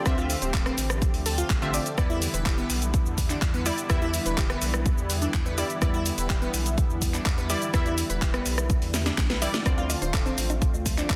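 Driving and expansive, this progressive house excerpt moves in a straight 4/4 pulse, shifting from Dm7 to Em7 and settling back on Dm7 near the end. A punchy, up-front electronic kick anchors the groove, joined by a layered house kit of handclaps, hi-hat, rim click, shaker and a cracking, softly clipped snare, both carrying a tape-warm character from a large room. Beneath them a round, deep analog bass with a nasal edge holds the low end, sidechain pumping through a tube-saturated tone. A smooth, detuned sawtooth pad sustains chords with chorus and a moving notch, while a lush unison pluck fires detuned, ring-modulated stabs through cassette tape and dub echo, and a glassy wavetable pluck spins crystalline arpeggios that also trail dub echo. After a drum fill, background bongos and congas enter at 9.7 seconds, all set in light reverb within a dense, heavily limited master.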